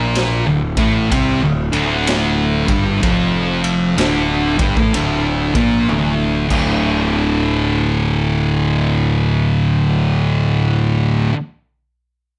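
A slow, swung 4/4 pulse at 63 BPM drives this sludgy, hypnotic stoner and doom metal excerpt in D minor. Two dark, fuzz-soaked electric guitars pick out a heavy riff up front, with a growly, bright overdriven fingered bass beneath them, while a gritty garage drum kit with a punchy kick, dusky cymbals and a pumping small-room sound plays from 0.2 seconds. The drums close with a fill before dropping out at 6.7 seconds, as the harmony moves from D minor to a bare D5 and the guitars and bass carry on under a light reverb.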